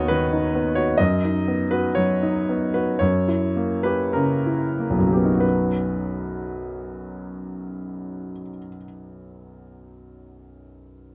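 Recorded dry and close with detailed microphones, this baby grand piano sounds intimate and up front, and the noise of its action is audible beneath the notes. It is a romantic character piece for solo piano in common time, cut from a longer work and played with flexible rubato. The mood is passionate yet hopeful, and the instrument's tone is clear and natural as the music spans from B1 in the bass up to D#5. Over the first 5.4 seconds the playing gradually slows before a new section begins, which runs until about 10.1 seconds. The piano plays alone for the full 11.1 seconds.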